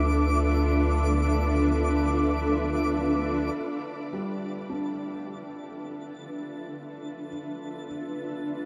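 Serene and spacious, this ambient passage floats in free time in D dorian, cut from a longer piece and resting on a single Dm69 chord. A granular cloud pad sits up front with sustained chords, its blurred, detuned, full-bodied tone evolving beneath its own built-in reverb. Behind it, a felt-muted upright piano plays soft arpeggios through a delay, intimate and hushed, with the audible noise of its action. A deep, round sub bass holds a low D until 3.5 seconds, while a twinkling granular texture sparkles high above with an octave-up shimmer. From 3.6 seconds the pad, piano and texture fade in as the second section opens, all bathed in a long shimmer reverb within a dark production.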